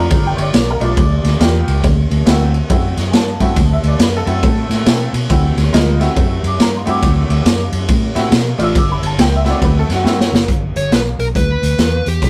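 A jangly, metallic tack piano and a round, foam-muted fingered electric bass open this rollicking, gritty electric blues shuffle at 139 BPM, joined at once by a punchy, saturated garage drum kit with a pumping small-room sound, moving through G9 and D9 chords until a drum fill at 10.1 seconds, during which the piano drops out at 10.3 seconds, leads into a new section where a smooth, overdriven lead guitar enters at 10.8 seconds, captured in a rough rehearsal-room recording with light reverb and warm saturation.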